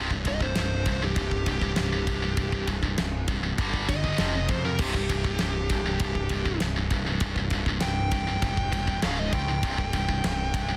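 A dark, high-gain lead guitar solo carries this relentless, epic heavy metal excerpt, entering at 0.3 seconds and holding the upper register between G4 and G5 through to the end. Beneath it, a bright, distorted rhythm guitar drives a heavy riff from the very start, sitting up front alongside a growling, overdriven picked bass that digs down to C1. A big acoustic rock kit of kick, snare, ride and crash plays from 0.1 seconds, with a fat snare and a tight kick in a mid-forward, roomy sound. The harmony moves through C5, G5, F5, C and Db5 before settling back on C5 at a straight 99 BPM in 4/4, tuned to A4 = 441 Hz. The mix is dry, dense and heavily limited in a modern style, cut from a longer piece at 10.8 seconds.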